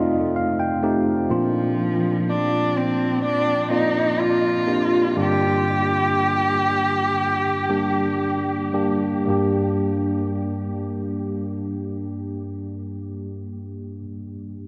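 Heartbroken and emotional, this slow pop passage in G minor moves at around 56-63 BPM in a straight 4/4, cut from a longer piece. A clean tine electric piano, heard as if through built-in speakers and placed up front, opens with a brief fill over F7 before settling into accompaniment. At 1.3 seconds a solo bowed cello takes the melody over Bbadd9, its warm tone shaped by expressive vibrato and portamento, sounding distant yet up front and trailed by a diffuse ambient delay. The harmony then comes to rest on Gm as the tempo gradually slows through the opening stretch. The cello falls away at 8.2 seconds, leaving the electric piano to carry the next section on its own until 14.7 seconds. A huge ambient reverb with a long tail soaks the whole mix, giving it a dreamy, wet atmosphere.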